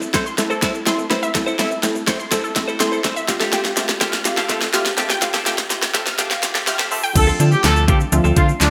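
An up-front pop drum kit with a knocking kick, fat snare, crisp hats, handclaps and crash, bathed in gated reverb, drives this confident, bittersweet dance-pop excerpt at 124 BPM in D minor. A dark, detuned polysynth comp pumps with sidechain and chorus beside a glassy wavetable pluck's arpeggios with digital delay, a clean, chorused electric guitar riff in the background and a grainy, very quiet tube shaker, all building over a drum fill across Am and Fadd9. At 7.2 seconds the drop lands on Dm7 as a snappy, metallic FM slap-like bass and a mellow, distant horn section melody arrive, all within a bright 1980s-style digital production with plate reverb.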